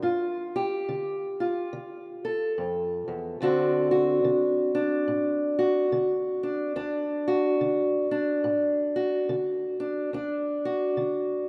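A lone fingerpicked steel-string parlour guitar, dark, woody and boxy with old strings and sitting up front, opens on G5 and moves to D7 at 3.4 seconds in a rollicking yet laid-back swung blues, heard through a lush hall reverb in a rough home-demo mix cut from a longer piece.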